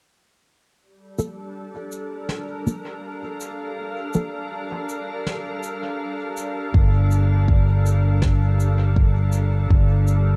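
A slow 81 BPM pulse in 4/4, with a gentle 55% swing on the sixteenths, carries this meditative, hazy ambient dub fragment in G minor, cut from a longer piece and tuned to A4 = 436 Hz. A soft, pure, organ-like pad built from sine tones holds sustained chords on a Gm9 harmony, its slow attack and long release bathed in ensemble chorus and reverb for a bright, calm glow. Early on, a muted, mellow chord stab of detuned sawtooth and square waves sits up front with a filtered pluck, colored by phaser, chorus and dub echo. Meanwhile a quiet cabasa and high-tuned snare, played with brushes in a small room, trail their own echoes through the passage. At 6.7 seconds the second section brings in a deep, layered electronic kick and a punchy, amped fingered electric bass anchored on G1, tube-saturated and forward in the mix, all wrapped in a dark, warm production.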